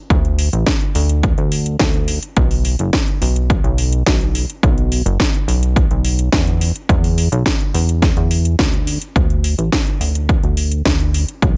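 Nu-disco with a groovy, feel-good bounce, this short straight-time excerpt pairs an up-front, retro chorused synth bass, glossy and sidechain-pumping, with a punchy overdriven electronic kick and a house kit of cracking snare and metallic hats, both drum parts carrying the air of a large room despite the otherwise dry sound.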